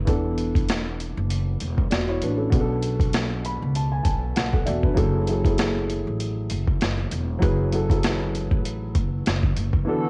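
Boom-bap hip-hop with a moody, reflective feel, swung in 4/4 and cut from a longer piece. A dark upright piano carries the chords, mellow and intimate with audible action noise, its vintage tone softened by cassette tape and a plate reverb. Beneath it, a pizzicato upright bass with steel strings sounds woody and acoustic, sitting up front in the low register. A sampler-style drum kit, pitched down, compressed and gritty, brings a thumpy kick, a high-tuned snare, rim clicks and hi-hat, re-recorded in a large room and taped to cassette. The harmony moves from E7sus4 to Bm7 and then F#m9, and at 9.9 s a hollow, flute-like pad with a soft attack and detuned chorus slips in as the bass and drums fall away, joining the piano in its final moments. The whole has the light reverb of a home recording on cassette.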